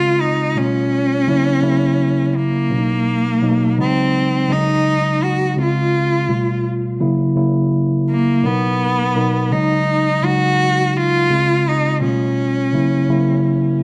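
Smooth and lush, this soul excerpt moves at an unhurried 84 BPM in a straight 4/4 feel. A single bowed cello carries the melody from start to finish, sitting close and up front with a clear, focused tone and vibrato in its middle register. Beneath it, a mellow tine electric piano plays the accompaniment throughout, its clean sound heard through the instrument's built-in speakers and also placed up front. The harmony cycles through a rich progression of Dbmaj7, G9, Gb7/Db, Cbmaj7 and Ab7sus4, repeating this loop from 5.6 seconds and again from 11.3 seconds. A moderate echo chamber reverb and a dark, warm production give the whole passage a smooth, enveloping atmosphere.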